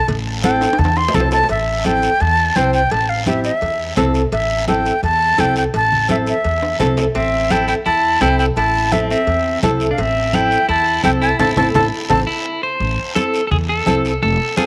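A breathy, reedy concert flute sits up front and carries the melody in this fiery, danceable cumbia, leading the opening bars with a crisp attack and vibrato. Beneath it, a woody pizzicato upright bass and a full-bodied, fingerpicked nylon-string guitar set a straight, steady groove, backed by raspy guiro, thin-skinned congas played with hard hands, and ringing cowbell and timbales kept in the background. Drum fills punctuate the sections, and a bright, twangy clean electric guitar adds a compressed, picked second line from 7.2 seconds. During a band accent, the flute drops out at 12.2 seconds, and the electric guitar takes a short solo from 12.8 seconds. Light reverb frames this excerpt, cut from a longer piece.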